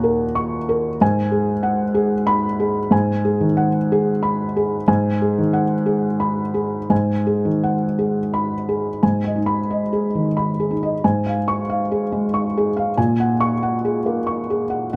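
Close, detailed microphones and a light reverb place a felt-muted upright piano up front, its soft, mellow tone carrying audible action noise that makes the sound feel natural and intimate. This short passage, cut from a longer piece, is neoclassical minimalist piano in G# dorian and 3/4 time, moving with a rubato feel at roughly 83-95 BPM. The piano plays solo throughout, spanning D#2 to C#6, and the mood is intimate and reflective. The opening harmony settles on D#m7 before shifting to G#m7 at 1.0 seconds. A new section begins at 9.0 seconds on G#m, then passes through C#/G# and closes on F#add9/A#.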